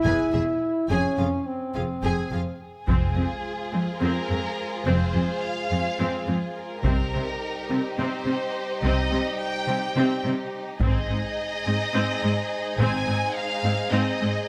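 A cut from a longer epic, heroic orchestral film score in F minor and 7/8 at 212 BPM opens with warm French horn chords, a bowed violin second line, rich cello and viola sections, and a dark, woody double bass section over a chord movement from E to F minor, before a lush, focused violin melody enters at 2.6 seconds and hard-stick taiko drums, compressed and saturated, drive the piece from 2.9 to 11.9 seconds through C minor and Ab, all captured with close, detailed microphones and light reverb.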